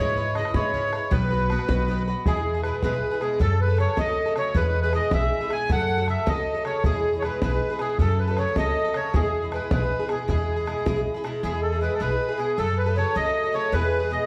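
Cheerful and rollicking, this short cut from a longer Celtic jig rolls along in a lilting 6/8 with a straight feel. An accordion carries the melody up front, its reedy, sweet voice colored by light tremolo tuning and a vintage, band-limited character. Beside it, an Irish bouzouki picks the accompaniment with the metallic shimmer of its double strings, while a pizzicato upright bass adds woody, dark low notes beneath. A tight, damped bodhran joins at 0.2 seconds and drops out at 11.3 seconds, leaving the strings and accordion to finish the passage. The harmony swings mainly between E and F#m, and a moderate recital hall reverb and a layer of vinyl crackle give the whole piece an old-record glow.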